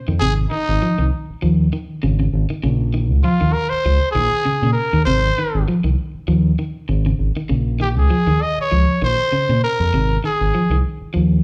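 Hypnotic and defiant, this afrobeat excerpt at 99 BPM rolls with a lightly swung sixteenth-note feel as a band playing live in one room moves between Ab and Bb minor chords in a large studio with moderate reverb. A growling trumpet leads with a raspy, gritty solo melody carrying light vibrato, punchy and up front from 0.2 to 10.8 seconds. Beneath it a round, dark fingered electric bass sits prominently in the mix while an electric guitar at the edge of break-up picks slightly broken-up arpeggios in a low register.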